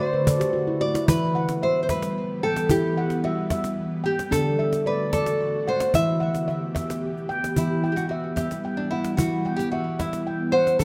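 Set in a wet echo-chamber reverb, this hypnotic, meditative world piece in 6/8, cut from a longer work, opens with a ringing handpan fill in its first 1.1 seconds before the handpan settles into arpeggios, while a dark, fingerpicked nylon-string guitar carries the melody up front through delay, a snappy, close cajon joins at 0.3 seconds, and an ethereal, detuned pad with ensemble chorus holds sustained chords moving between D and E minor.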